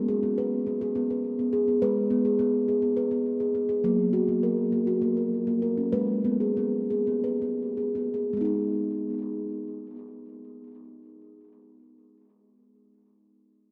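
Meditative and hypnotic, this world-music fragment from a longer piece features a solo steel tongue drum, struck with rubber mallets and placed up front, whose round, ringing tones carry tape echo through a cavernous cathedral reverb in 7/8 and G# minor at 156-208 BPM in eighths, slowing down between 3.8 and 8.3 seconds as the chords move from G#m to F# and back before the drum stops at 11.9 seconds.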